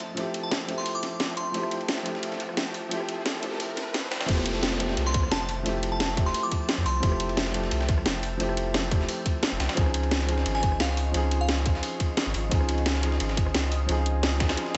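Lightly reverberant and dulled at the top, this cut from a longer liquid drum and bass piece in F major moves at 175 BPM with a dreamy feel. A soft, felt-muted upright piano with audible action noise, a dark shimmering pad pumping in the background, and two layered kits open the track: a gritty, compressed sampler-style kit with a fat snare recorded in a large room, and a garage kit with a cracking snare and bright hats. Glassy, crystalline FM bell phrases with chorus and phaser flicker above as a riser and downlifter build in the background, until the drop at 4.3 seconds brings in a tight electronic kick and a round, deep sine sub bass up front, with the harmony moving from Fmaj9 to Dbmaj9 at 9.8 seconds.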